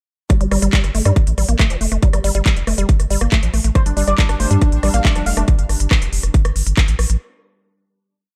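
This short psychedelic trance piece opens straight into its drop at 0.3 seconds. A tight, tape-warm electronic kick pounds four-on-the-floor up front at 139 BPM in 4/4, over a G5 chord. A programmed kit adds crisp closed and open hi-hats, rim clicks and a handclap backbeat, while a round, deep analog bass rolls beneath in sixteenth notes. A woody, wave-folded pluck plays an accented 16-step acid line, its short decay colored by chorus, delay and sidechain pumping. At 3.8 seconds a thick, detuned unison lead with a nasal sawtooth edge and vibrato joins, repeating a riff over a pedal note in sixteenths through phaser, cassette tape and delay. From 4.1 seconds a faint pulsing gated texture drones in the background with chorus and reverb. Set in a digital ambience, the hypnotic groove of kit and bass carries on to the close at 7.2 seconds.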